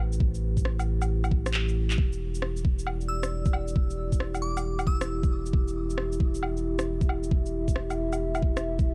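Future garage at 135 BPM in 4/4, swung on the sixteenths, this short cut from a longer piece has a ghostly, nocturnal mood and moves from Am7 to Em7. A dark, detuned analog pad holds moody, nasal chords with a slow attack and long release, colored by chorus, 12-bit sampler grit and sidechain pumping. Beneath it, a round sine sub bass sits deep and up front, also pumping with the sidechain. The drums are an overdriven, knocking electronic kick placed prominently, plus a layered kit of electronic shaker, rim click, woodblock and handclaps roughened with the same sampler grit. The kick drops out at 1.5 seconds for a drum fill. From 3.1 to 5.3 seconds a quiet, glassy FM bell rings out a high, crystalline melody through chorus and tape echo, in a dry, close-sounding mix.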